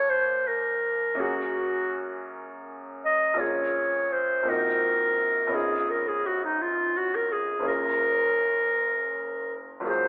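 A clarinet and a baby grand piano begin together, opening a hazy, mysterious impressionist duo in 6/8 at 55 BPM, counted in dotted quarters. The clarinet carries the melody between Eb4 and Eb5, its warm tone and soft attack set up front as the solo voice yet sounding distant and roomy, in a classical manner. Beneath it the piano supplies clear, intimate accompaniment that reaches down to Gb1, its natural sound carrying audible action noise. The beats are uneven and the pace moves in rubato, while the harmony passes from Ebmadd9 through Bbm7 to Gbmaj9. A moderate scoring-stage reverb surrounds the pair, and the recording has a telephone-like sound across its 10.1 seconds, cut from a longer piece.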